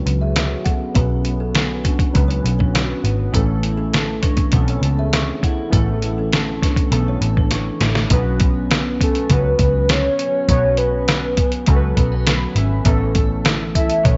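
Lonely and wistful, this bedroom-pop excerpt moves at 101 BPM in a straight 4/4, tuned to A4 = 438 Hz, over Bsus2 and Aadd9 chords with a filter sweep through the opening. Up-front, pitched-down sampler drums with a thumpy kick and fat snare sit on a dark, foam-muted bass with tube saturation. Behind them, a slightly broken-up guitar soaked in lush chorus and vibrato blends with detuned, warbling synth keys in a cassette-tape haze, and a woody, ringing kalimba plays until 7.5 s. A drum fill leads into the second section at 8.1 s, and from 9.0 s a soft, round octave-layered synth lead with phaser and tape echo carries the melody.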